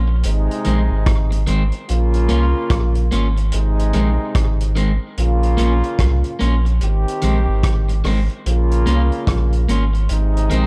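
A deep, round sub bass opens this laid-back, serious roots reggae excerpt at 73 BPM in Bb dorian, joined within the first second by a slightly broken-up, picked electric guitar steeped in spring reverb and dub echo, a brilliant, tight trombone section with light vibrato and its own dub echo, and a small-room vintage kit of hi-hat, punchy kick and rim click with a rolled-off top, all swinging over an alternating Ab and Bbm progression in a dark, dry production where the up-front bass dominates.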